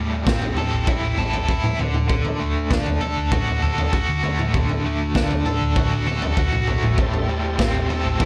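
A bright, overdriven, double-tracked guitar riff with tremolo opens this dark, mysterious psychedelic rock passage at 98 BPM, joined at 0.3 seconds by a gritty, up-front garage drum kit with a boomy kick and pumping small-room sound, plus a round, punchy hollow-body bass sitting in the background. The harmony moves from Am7 to a long stretch on D before returning to Am7. At 7.0 seconds a smooth tonewheel organ slips in with sustained chords through chorus vibrato and a fast rotary speaker.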